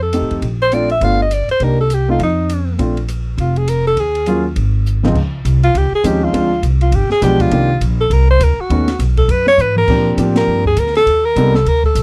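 This 12-second cut from a longer piece opens at once with a breathy alto saxophone carrying the melody over a woody, gut-strung upright bass, the small-group swing and bop moving briskly at 203 BPM in 4/4 with a sophisticated, swinging feel in Bb major. A moment later a grand piano and an acoustic drum kit join in, the piano providing accompaniment with an intimate tone and audible action noise, while the kit sits lower in the balance with dark cymbals, a medium-tuned snare and a boomy kick heard from a small room. The saxophone sounds clear and jazz-styled, with light vibrato and a soft subtone, and the pizzicato bass comes through thumpy and up front. The harmony moves quickly through changes such as Bbmaj7, G7, Cm7 and Dbmaj7, shifting into a new section at 5.2 seconds after a drum fill. Another fill at 9.6 seconds leads to a band accent at 10.3 seconds, all captured in a dry, close 1970s-style studio sound with little reverb.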